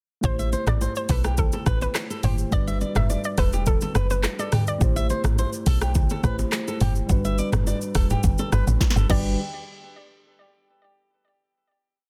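Sunny and romantic, this short afrobeats piece rides a straight, syncopated groove over chords that alternate between Am7 and Gmaj7. A woody log drum bass sits up front with a punchy, bouncy syncopated line, while the electronic drum kit pairs a deep kick and sharp snare with syncopated rim clicks, shaker, hi-hat, handclaps, toms and crash. A mellow tine electric piano holds clean, spread chords, and a fingerpicked flamenco guitar with tape echo repeats an interlocking figure. A hollow square-wave pluck with chorus and tape echo carries the syncopated hook until 4.8 seconds, then returns briefly just before the final hit. Congas and bongos, played with hard hands in a live room, sit in the background; a drum fill arrives at 8.8 seconds, and a final hit rings out from 9.4 seconds in a dense, heavily limited modern master.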